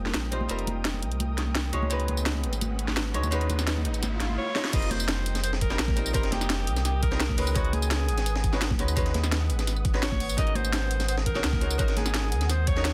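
Melancholic and lush, this excerpt of liquid drum and bass moves at 170 BPM in a straight 4/4, built on extended suspended chords that shift between F9sus4, Db9sus4 and, late on, Ab9sus4. From the start, a dark, clean hollow-body archtop guitar plays picked accompaniment through delay, over an ethereal, warbling pad with detuned sawtooth character, chorus and its own reverb pumping in the background, while a deep sine sub bass with an octave layer sits up front with tube saturation. An up-front drum and bass kit with a cracking snare, bright hats, tambourine and crash cymbal carries overdrive, joined by ringing, soft-handed congas in the background, as a very quiet electronic riser and swell build toward a drum fill at 4.6 seconds. The drop arrives at 4.7 seconds, bringing in a knocking, overdriven electronic kick and a gritty, pitched-up breakbeat kit with a high-tuned, filtered snare and hats tucked behind. 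Just before, at 4.4 seconds, a clear alto saxophone takes the solo melody with vibrato, a smooth top and classical poise, echoed by delay. The mix has light reverb and a dense, heavily limited modern master.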